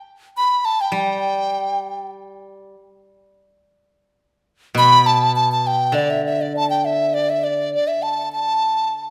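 In a free, rubato 2/4, this festive, pastoral excerpt of Chinese traditional chamber music sets an airy, hollow large dizi up front, its buzzing membrane and vibrato colouring the tongued melody from 0.4 seconds, over a quieter steel-string zither whose silvery, ringing fingerpicked accompaniment enters at 0.9 seconds, both bathed in the lingering reverb of a recital hall before the brief closing section arrives at 7.1 seconds, with the dizi carrying on alone from 7.7 seconds.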